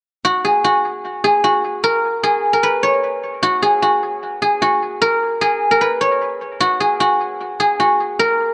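This brief cut from a longer piece opens in a small room with light reverb and an echo-heavy mix, giving it a hazy depth. It is melancholic, brooding hip hop at 151 BPM in 4/4, felt at half-time, with tuning set to A4 = 436 Hz. A guzheng carries the melody from 0.2 to 8.5 seconds, moving between Gb4 and Db5. Played with fingerpicks, its acoustic tone is silvery and ringing, sitting up front in the mix. A low-pass filter softens its edges while dub echo trails each phrase, lending the instrument a smoky, suspended quality.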